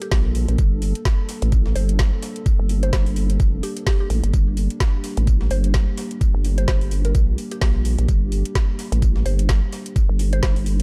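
A dark mix in a digital ambience carries this aggressive, swaggering bass house clip: an up-front, nasal vowel-sweep wobble bass with tube saturation and a knocking electronic kick drive beneath a deep, detuned analog pad pumping to the sidechain, a woody mallet-like synth pluck melody washed in chorus, phaser and delay, a garage drum kit with metallic hats, and a gritty, pitched-up breakbeat sampler-style drum kit tucked in the background.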